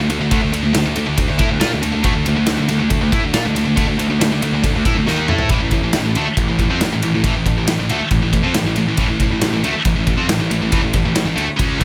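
A bright, high-gain distorted electric guitar opens this heavy metal piece, double-tracked and up front, with a growly fuzz bass beneath it, overdriven and played with a pick. The acoustic drum kit comes in at 0.1 seconds, driving a straight 4/4 pulse with a punchy kick, a medium-tuned snare, ride cymbal and toms. The mood is epic and relentless, with the guitar riff built first around a D power chord. A drum fill from 5.1 to 5.5 seconds leads into a new section, where the harmony shifts to an A power chord. The band plays in a small room sound, and the recording is cut from a longer piece.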